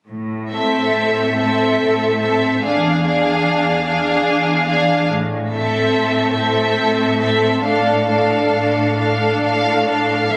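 An intense, clear violin section carries the melody above the ensemble, its vibrato lush and up front yet faintly distant, in this elegiac excerpt from a slow romantic movement for string orchestra in A minor, moving in a rubato 3/4 at around 64-74 BPM. A rich cello bass begins at 0.1 s, smooth and even, and from 0.5 s a focused second violin line and bowed violas fill in the harmony as the chords pass from Am through E7b9 and back to Am before settling on Dm/A. The melancholic sound sits in a wet scoring-stage reverb, heard as if captured on a phone in the room with a club-like ambience.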